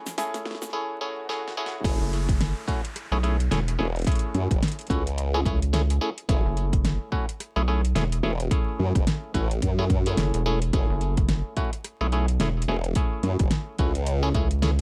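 A formant-sweep wobble bass, saturated and detuned with chorus, drives this swaggering, gritty glitch hop excerpt in F# minor at 108 BPM with a swung 16th feel. It is joined by a punchy, up-front electronic kick from 1.8 seconds and a rubbery, hollow square bass from 2.0 seconds. A twangy clav through a combo amp plays phased, delayed, sidechain-pumped stabs over a pop kit with a fat snare, metallic hats and rim clicks, while a grainy egg shaker and a background swell and downlifter mark the brief build-up and filter sweep before the drop. The mix is dry and dusted with vinyl crackle, holding on F#m7 throughout.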